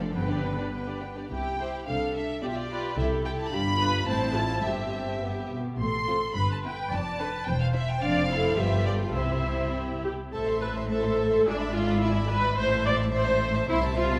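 In a flexible, rubato 2/4 at 107 BPM, this quick classical-period movement for string orchestra moves gracefully and cheerfully in C major before turning to A minor at 10.3 seconds. A rich, focused violin section carries the melody above a smooth, even second violin line, while an up-front viola section supplies the accompaniment. The cellos, with soft attacks and expressive portamento, join a clear, intense double bass section on the bass, and all five bowed sections play throughout this cut from a longer piece, set in the wet reverb of a concert hall.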